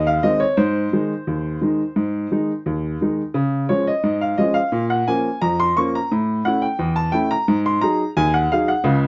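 A straight two-beat ragtime pulse drives this playful, lively nine-second fragment of a longer piece, played on a solo baby grand piano with a warm, boxy, up-front tone spanning Db2 to Db6, set in light reverb as the harmony moves through Ab, Db, Bbm and A before settling on Ab5.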